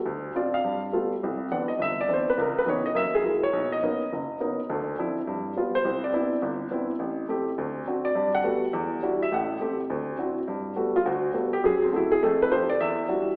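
Playful and relaxed, this short jazz cut from a longer piece swings briskly at 207 BPM in 4/4, settled in G major. A lone baby grand piano carries everything from 0.1 to 13.4 seconds, ranging from F#1 up to F#5 with an intimate, up-front presence, short sustain and audible action noise. The harmony moves quickly through rich extended chords, passing from Dm7 and G9 to Cmaj9, shifting through C#m9, F#9 and Bmaj9, then winding back home to Gmaj9 around 8.2 seconds. The final stretch from 10.5 seconds slides through F#m9b5 and F9 before landing on Em9. A wet recital-hall reverb surrounds the instrument, and the whole recording carries a thin, boxy AM radio character.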